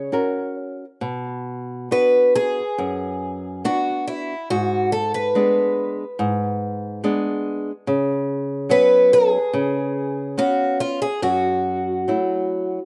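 The recording is dry and close, captured outdoors with barely any reverb, so both guitars sit up front in the open air. This short cut from a longer fado-style ballad in 4/4 moves at an unhurried, rubato pace, and its mood is mournful and passionate. A picked, ladder-braced twelve-string acoustic guitar carries the melody in a compact upper register, its old strings giving a warm, woody, boxy tone with a shimmering, octave-doubled ring. Beneath it, a fingerpicked flamenco guitar supplies warm accompaniment across a far broader span, sitting a little lower in level than the melody. Both parts play throughout the 12.8 seconds as the harmony moves from F# through Bm, G#dim, C#7sus4 and C#7 before settling on F#m7.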